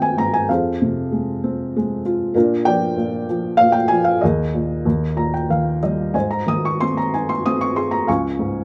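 Warm and sunny, this short classical passage for solo piano moves in a gentle triple metre with a lyrical, rubato feel, its uneven beats giving the phrasing an unhurried, breathing quality. A felt-muted upright piano carries everything, its muted, intimate tone sitting up front with a slightly boxy character and audible action noise beneath the notes, set in light reverb. A brief fill from 4.8 to 6.1 seconds bridges into the closing chords of this fragment of a longer piece, where the harmony settles on Ab and then Db.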